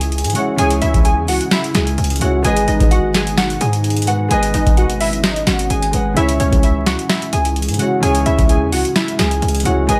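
Vinyl crackle hangs over this ten-second cut from a longer brooding, melancholic trap piece in C# minor, set at 129 BPM with a half-time feel and tuned slightly flat of standard pitch. A booming analog drum machine sits up front with a deep kick, crisp snare and metallic hi-hats, while a distorted 808-style bass underneath sounds heavy and saturated, with a fast attack, a noise layer and a decaying tail. The melody comes from glassy digital keys, detuned and wave-folded with a filter sweep and chorus, ringing between C#4 and G#5. A dark, mellow baby grand piano plays accompaniment alongside it, and a deep, warbling vintage pad with a sub octave, chorus and built-in reverb holds sustained chords in the background. The harmony moves from C#m to G#m at 2.4 seconds and returns to C#m at 6.2 seconds.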